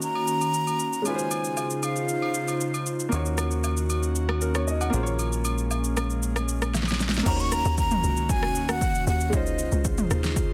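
Amapiano at 116 BPM in Eb dorian, a hypnotic late-night excerpt where a breathy, tape-echoed jazz flute floats over clear grand piano and an airy chorused pad pumping against an overdriven deep house kit with punchy kick and fat snare, agogo bells and woodblock sounding until 7.0 seconds, a plucky, funky analog bass entering at 3.1 seconds, and a hollow, bouncy log drum bass taking over at the 7.3-second drop after a drum fill, all in a dry, dense, heavily limited mix.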